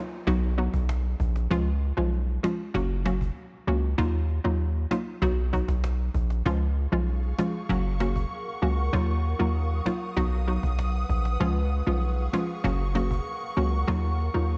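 A lightly reverberant mix opens this bouncy, hypnotic dancehall excerpt in Eb minor at 97 BPM, moving in a straight 4/4 over a looping B, Db, Gb, Ebmadd9 progression. A hollow, detuned square-wave pluck with chorus sits up front from the first moment, its fast attack and short decay giving the accompaniment its spring, while a very quiet electronic downlifter sounds within the first 1.5 seconds. At 0.3 seconds a hard-hitting 808-style bass arrives, heavy and sine-based with a noise layer, its fast attack and decaying tail pushing forward in the mix. A snappy acoustic cajon with snares, played with soft hands and miked close, sits in the background beneath it. From 7.1 seconds an ethereal, airy pad of detuned triangle and sawtooth unison voices swells in slowly with sustained chords, mellow and washed in ensemble chorus and its own reverb, spanning Gb3 to Eb6 above the groove.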